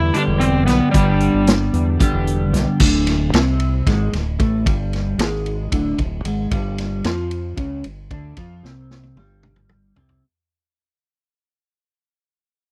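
Set in a straight 7/8 at 226 BPM counted in eighths, this trippy, hypnotic psychedelic rock excerpt opens on G with a bright, overdriven slide guitar melody carrying tape echo, which drops out at 1.5 seconds. A clean, double-tracked electric guitar riff with phaser runs throughout over a growling fingered bass with overdrive and a vintage acoustic drum kit with a punchy kick and rolled-off top. The harmony shifts to D5 and then G5 as the piece begins fading at 2.8 seconds, with a drum fill arriving at 8.6 seconds, all captured in a dry, close 1970s-style studio sound with light reverb.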